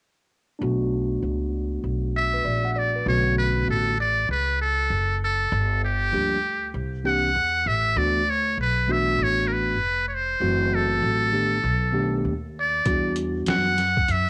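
A swung 16th-note feel at 98 BPM in 4/4 drives this mellow, smoky jazz-hop excerpt in B minor, where a clean tine electric piano and a woody, up-front pizzicato upright bass begin at 0.6 seconds over chords from Bm9 to Em9, a brilliant yet thin metal-muted trumpet with breathy tone and light vibrato takes the solo melody from 2.2 seconds, and a gritty, pitched-down boom bap sampler kit with a thumpy kick arrives at 12.9 seconds, with the trumpet and drums carrying cassette tape colour in a small room with light reverb.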